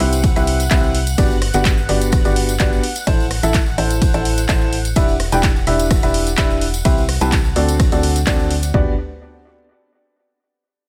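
A digital ambience surrounds this feel-good, uplifting piano house drop, cut from a longer piece. Up front, a clear, woody upright piano, slightly detuned and short in sustain, plays the riff through vintage 12-bit sampler grit, tape echo and sidechain pumping. Beneath it, an organ-like FM bass, hollow and dark with a fast attack that decays, carries the low end with the same pumping. A silky sawtooth string pad sits in the background, its slow-attack chords shaded by ensemble chorus and phaser. A punchy, tape-warm analog drum machine, re-recorded in a large room, puts its kick drum and toms forward, with handclaps, hi-hat, ride cymbal and rim click set lower, while a close, dry tambourine adds acoustic texture in the background. The harmony moves from Cmaj7 through Gmaj7, Am, Em7 and D7, arriving on Gmaj7 at 8.7 seconds as the drop ends.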